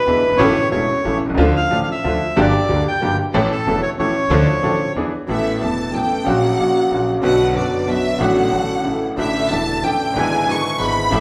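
A tango in 3/4 at 185 BPM, played with a rubato feel in D harmonic minor, this short cut from a longer piece feels sultry and tense. A reedy, up-front bandoneon carries the melody for the first 4.9 seconds, over a bright concert grand piano whose brilliant, slightly worn tone, deep bass and audible action noise give the accompaniment an intimate presence. A woody, growly pizzicato upright bass anchors the low end, while a very quiet, lush string section adds soft-attack sul tasto stabs with a smooth top. At 5.3 seconds the music moves into a new section as a close, expressive violin section takes over with a bowed solo line full of vibrato, while the chords shift from the minor-key opening toward Asus2, Bm and a closing E7/G#. The band sounds as if it is playing live in one room, wrapped in a wet, large studio reverb.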